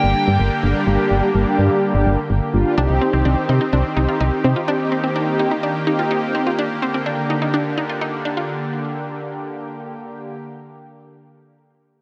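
Set in a lush hall reverb, this melancholic, cool synth-pop excerpt in G minor moves at 126 BPM in a straight 4/4, opening on G minor before shifting to C minor at 2.8 seconds and back to G minor. A biting, overdriven lead guitar with tape echo carries a brief high melody over mellow, brassy synth brass with chorus, a thick, warbling unison pad holding sustained chords up front, and a punchy, round FM bass that sits dark and forward until 4.5 seconds. From 2.8 seconds a bright, vintage unison pluck adds arpeggios with tape echo.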